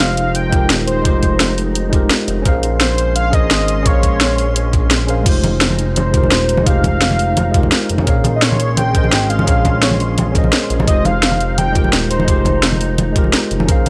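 Liquid drum and bass with a rolling, dreamy mood: a velvety synth lead carries the melody through chorus and dub echo over a worn, slightly out-of-tune tine electric piano with delay, a glassy, ethereal FM pad with sidechain pumping in the background, a smooth sawtooth synth bass, a layered electronic kit with a cracking snare up front, a gritty, thumpy sampler-style kick, and compressed, soft-handed congas that join at 5.4 s, as the harmony alternates between Fm9 and Bbm9.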